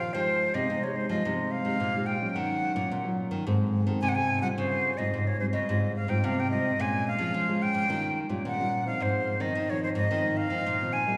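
Lively yet nostalgic, this samba and choro passage in F minor moves at 108 BPM in a straight 4/4, its harmony drifting from Fm9 through Dbmaj7#11 to settle on Ab6, taken from a longer piece. A breathy, bright concert flute carries the tongued melody up front with a straight, slightly unsteady tone, while a fingerpicked classical nylon-string guitar, also up front, supplies the accompaniment with audible finger squeak. A second nylon-string guitar plays a thumb-plucked bass line, and all three sit in a wet church reverb with a 2.8 s decay that gives the small ensemble a spacious, hall-like glow.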